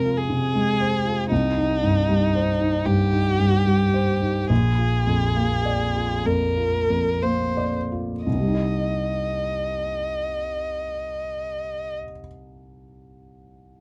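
This fragment of a longer neoclassical piece for piano and strings moves in a rubato 4/4, drifting between 57 and 80 BPM and slowing through its opening 8.3 seconds, with a fragile, melancholic mood in C minor. A felt-muted upright piano carries the accompaniment from the start until 13.8 seconds, its soft, mellow, vintage tone sitting up front with audible action noise that lends an intimate, close feel. Above it, a single bowed violin sings the melody between Eb4 and Eb5 until 12.0 seconds, rich and expressive with vibrato and portamento. The harmony moves from Fm to Cm and on to Bb before settling back on Cm at 8.3 seconds, where a second section begins. The sound is that of a dry, close 1970s-style studio recording with a short, moderate booth ambience.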